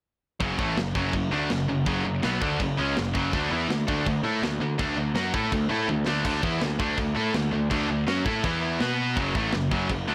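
An up-front, bright, picked distorted guitar leads this heavy, epic heavy metal passage at 164 BPM in F# minor, playing alongside a second distorted guitar in the background, a very quiet, warm, double-tracked sludgy guitar, a growly fuzz bass, and a tight acoustic drum kit with china and crash cymbals, toms, and a fill at 5.9 s, set in a small, blown-out, overdriven room sound as the chords move from F#m through D5, E5 and B5.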